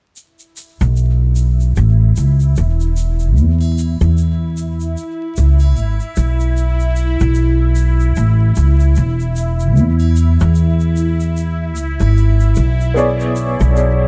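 A close, dry egg shaker and triangle with a group handclap open this dark, cinematic trip hop piece at 75 BPM, swinging in B dorian over a drifting progression of Bsus4, A and C#m7 chords, with an echo-heavy mix and vinyl crackle throughout. A woody, up-front pizzicato upright bass with steel strings arrives at 0.8 s, followed at 1.0 s by a tense, bright, string-like sawtooth drone held on E4, detuned and sustained with vibrato, phaser and its own reverb. At 12.9 s a soft, felt-muted upright piano slips in up front, intimate and mellow with audible action noise, tremolo and tape echo, landing on a closing Bm69.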